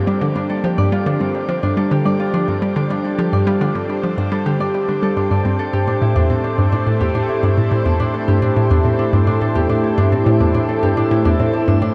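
Drenched in a long, shimmering reverb and a dark production, this cosmic, expansive stretch of sequencer-driven ambient space music at 106 BPM fades in on a bright, evolving sawtooth pad holding sustained chords through chorus, while a fingerpicked, ringing Celtic harp sits up front with arpeggios through analog delay, and a hollow, bouncy square-wave pluck carries a mellow, detuned low riff with chorus and analog delay, the harmony moving from Gmadd9 to Am7 at 5.6 seconds.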